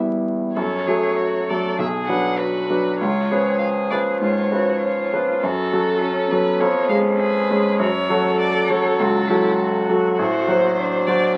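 A restless, stormy classical-period movement for piano trio in F# minor at 100 BPM in 4/4, played with rubato and tuned to A4 = 438 Hz, cut from a longer piece. The clear, intimate baby grand leads off the accompaniment at 0.0 s, up front with long sustain and audible action noise. At 0.6 s a focused, bowed solo violin takes the melody with vibrato and a smooth top, joined by a rich, even cello carrying the second line. The whole sits in moderate studio reverb on a very old 78 rpm record with vinyl crackle, moving from E minor into F# minor, then through B minor and C#7 before settling on F# diminished.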